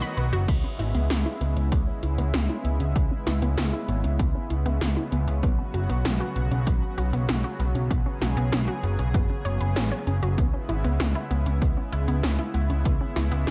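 A lush, warbling unison pad holding sustained chords with chorus and sidechain pumping opens this driving, nocturnal synthwave excerpt at 97 BPM in C# minor together with a bright, wave-folded unison pluck playing arpeggios in the background through cassette tape and delay; at 0.2 s a dark, overdriven picked electric bass with tube saturation and sidechain pumping arrives with 80s electronic pad drums carrying a gated snare and metallic hats, a punchy, up-front electronic kick enters at 0.5 s, and the harmony moves from C#m7 to Bsus2 and back under light digital reverb.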